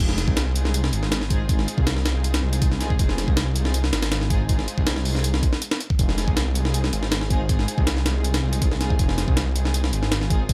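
A gritty, compressed breakbeat kit drives this dark, nostalgic drum and bass and jungle fragment. Its pitched-up, sampler-style hits, a thumpy kick, a high-tuned snare and hi-hat sit up front with a tape-warm edge and a touch of studio reverb from 0.1 s. Beneath it, a detuned saw bass holds the low end from F1 to C2, its thick, beating sawtooth tone carrying a sine weight and a menacing, sustained presence with a fast attack. Far behind, a dark, woody string section bows lush, distant ensemble chords with vibrato, resting on a single Fm7 in F minor. The passage runs at 160 BPM in a straight 4/4 as a drop, and the overall sound is fairly dry.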